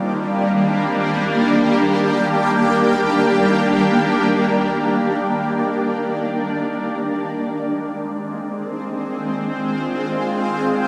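A shimmering synth pad opens this reflective, melancholic ambient fragment on its own, drifting in free time with a slow attack and a sustained, long-releasing tone. Its triangle-based sound is bright and up front, layered in unison with an octave-up sparkle and a granular texture that gives it an ethereal glow. Chorus, a phaser and the pad's own built-in reverb colour it further, while a huge, wet ambient space with a 7.4-second decay wraps it in a long, hazy tail. The harmony rests on Ebmaj7 before shifting to Fm7 at 6.7 seconds, nudging the mood from wistful openness toward a darker, more pensive shade. Cut from a longer piece, the passage holds this single sustained pad texture from start to finish.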